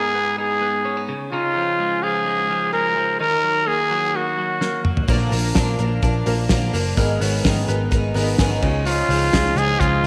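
This excerpt of jangly indie pop opens with a growling, raspy trumpet carrying the melody up front over twelve-string electric guitar arpeggios, clean and compressed, trailing spring reverb and tape echo. The mood is wistful and bittersweet, moving through chords like Abmadd9 and Dbadd9 in a straight 4/4 feel. A drum fill at 4.6 seconds brings in a cloth-damped, thuddy kit with a fat snare, tight kick and dark cymbals, sitting up front. At 5.1 seconds the picked twelve-string acoustic guitar adds a boxy, shimmering, octave-doubled layer in the background, alongside a woody, slightly detuned upright piano and a round, foam-muted vintage electric bass. The trumpet drops out and returns at 8.9 seconds, its light vibrato ringing through a small room ambience and moderate echo chamber reverb.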